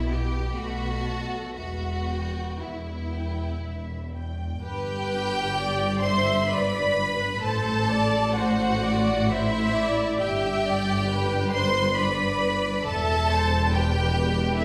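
A reverberant recital-hall sound surrounds this short excerpt of a slow, romantic movement for string orchestra, its yearning, melancholic mood carried by a rubato pulse in 3/4 at roughly 57-72 BPM. The first violins sit up front with the melody, their bowed tone smooth and even with a singing vibrato, while the second violins trace a focused, clear line beneath them. The violas add a woody accompaniment that feels more distant, coloured by a light vibrato. Down in the bass, the cellos give a rich, expressive foundation with touches of portamento from the background, and the double basses add a lush, soft-attacked depth, also sliding expressively between notes. The harmony begins in E minor and settles into G major at 4.6 s, passing through A minor sixth and back to G before returning to E minor at 12.8 s, shortly before the excerpt ends at 14.6 s.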